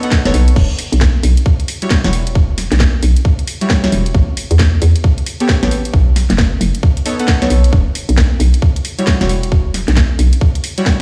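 Late-night and soulful, this swung two-step garage cut opens with deep, dark chord stabs, detuned and full-bodied, coloured by chorus, tape echo and a filter sweep, cycling through B9, Em69 and A9, alongside a garage kit with a cracking snare, warm hats and crash cymbal. A tight, up-front electronic kick joins at 0.1 seconds, and kick and kit are both re-recorded in a small room. A hollow, bouncy FM bass knocks up front from 0.3 to 10.3 seconds, and the whole passage sounds as if played on a big sound system in a bare stone room.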